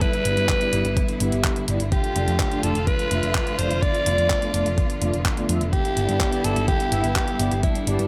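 This sunny, danceable italo disco excerpt opens with a raspy, up-front alto saxophone melody trailed by tape echo, set over clear, focused bowed strings holding sustained chords with vibrato. A thumpy, compressed electronic kick sits prominently in the mix and drops out at 7.7 seconds, while an overdriven 12-bit drum machine adds handclaps and hi-hat with a small-room character. From 0.3 seconds, a picked electric bass brings a dark, round, amped tone with tube saturation, and fat, brassy analog synth stabs arrive, thickened by chorus and vibrato and shaped by a filter sweep throughout. The harmony moves from G6 to Dm/F and back to G6, all wrapped in light digital reverb.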